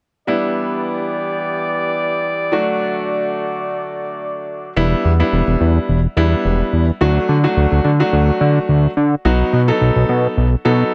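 Studio ambience frames this bittersweet yet confident pop excerpt in E minor at 107 BPM, where a clear, smooth, up-front concert grand piano plays accompaniment over Em7 and D chords throughout, a mellow, vintage brass section holds sustained chords with light vibrato until 4.7 seconds, and a fat, saturated, detuned sawtooth analog bass enters at 4.8 seconds to carry the low end before the harmony turns to B at 9.3 seconds.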